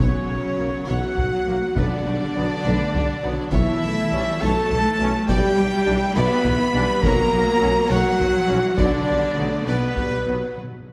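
A dark, relentless stretch of epic orchestral film score, cut from a longer piece, opens with most of the orchestra at once in B minor, moving at 68 dotted-quarter beats per minute in a straight 6/8. Violins carry the smooth, bowed melody in the background, a very quiet, pure-toned concert flute adds a second line, a focused second violin line sits beneath, and lush violas with soft attacks and portamento fill out the accompaniment. Mellow French horns hold sustained chords, joined at 0.6 s by a very quiet trombone section, while a trumpet section adds stabs up high. The low end comes from woody, distant cellos, a solo tuba and a rich, expressive double bass section. Very quiet timpani struck with hard mallets underpin the texture, a close, dry taiko ensemble with heavy sticks enters at 1.2 s, and a brief break at 10.6 s brings a timpani fill. The chords turn through F#/B, Bm, A/B and Em7/B, all over B, and a generous scoring-stage reverb surrounds the orchestra.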